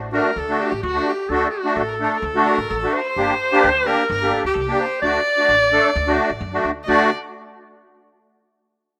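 Klezmer at 129 BPM in a straight 4/4, festive yet bittersweet, this short cut from a longer piece moves from D to G minor at 3.2 seconds and back to D at 5.0 seconds. The upright bass starts first, plucked pizzicato on steel strings with a woody, thumpy tone that sits low in the mix. A warm, vintage-sounding clarinet carries the solo melody with vibrato, a soft attack and a jazz-style subtone. A nasal, earthy violin played by one bowed player adds an airy second line with light vibrato, sitting further back. The reedy musette accordion shares the front of the mix with the clarinet, its dark, shimmering tone giving smooth accompaniment. Light reverb and small-room ambience give the whole thing the rough feel of a home demo, and all four parts stop at 7.1 seconds.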